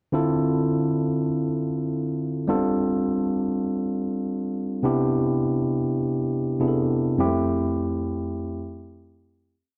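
Dark production and a moderate plate reverb frame a clean, up-front tine electric piano playing solo in this confident, punchy R&B piece in free time and D dorian, its held rootless chords, touched with grace notes, moving through Dm9, G7sus4, Cmaj9 and Fmaj9 before a fade-out from 7.2 seconds.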